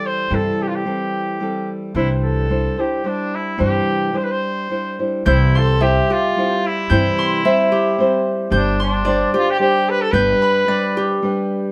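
A straight-feel 3/4 pulse at 110 BPM drives this festive, proud mariachi piece in C major, cut from a longer work and played live by a band in one room with moderate studio reverb. Up front, a clear, distant-sounding, classical-style trumpet carries the solo melody over fingerpicked flamenco guitar with fresh strings and a woody, thumpy pizzicato upright bass, while a ringing concert harp adds fingerpicked arpeggios from 5.3 s. The chords move from C6 and Cadd9 through C to Gsus4 and G.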